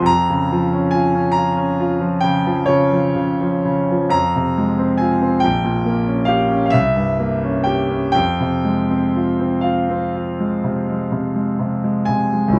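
Classical romantic nocturne for solo piano, this brief passage cut from a longer piece carries a wistful, yearning mood in a slow 9/8 shaped with free rubato. A bright concert grand plays alone throughout its roughly 12.6 seconds, spanning from deep bass notes up into the upper register. Its tone is brilliant and open, with long sustain that lets each chord ring, and it sits up front in the sound with a light touch of reverb around it. The harmony drifts from B-flat minor over F into F minor, then passes through a diminished chord and a tense C7 with a flat ninth before settling back on F minor near 8.2 seconds.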